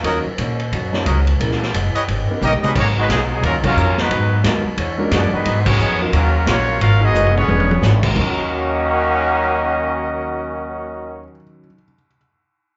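Swinging and brassy, this big band swing excerpt in Eb minor at 177 BPM opens with clear, tight trumpet-section stabs over a woody, thumpy pizzicato upright bass, a vintage drum kit with dark cymbals and a punchy kick, an intimate grand piano and a very quiet picked steel-string acoustic guitar; at 2.4 seconds a mellow, up-front trumpet section takes the melody while a brilliant trombone section carries a second line, the horns and piano touched with slapback echo, and the drums drop out at 8.3 seconds, all heard as a live gig through the venue's PA in club reverb.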